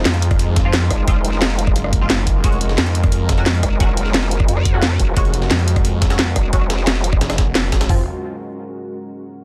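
Aggressive and tense, this is dark, technical drum and bass, heard as a short cut from a longer piece that sits in its drop for nearly the whole span. Up front, a snarling distorted saw bass growls with detuned unison sawtooth grit and overdrive, while a nasal vowel-sweep wobble bass with a resonant formant filter joins at 0.9 s and drops out at 7.2 s. Two layered electronic drum kits carry the groove, one with a knocking kick, toms and bright hats, the other with a cracking snare, rim click and hats, both re-recorded in a small room. Beneath them sits a very quiet, gritty breakbeat sampler-style kit with a high-tuned snare. A deep, moody pad holds sustained chords with a slow attack, sub octave and chorus, pumping under the sidechain, as a band-passed, phased chord stab with tape echo flickers in the background over Fm7 and Gbadd9/F harmony. The mix is dry, dense and heavily limited, with a band accent landing at 7.6 s just before the section shifts.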